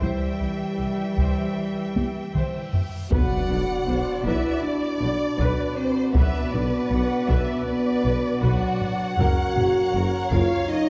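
Heavy-stick taiko drums, mellow French horns and lush, vibrato-rich violin sections carrying the melody and a dark second line open this heroic, relentless epic orchestral film cue at 79 BPM, over expressive violas, background cellos and double basses, until a huge, bright reverse cymbal at 2.9 seconds leads into an impact at 3.1 seconds, where a hollow stopped-flute pipe organ, a soft-attack tuba and very quiet calf-head timpani join, all bathed in a wet scoring-stage reverb.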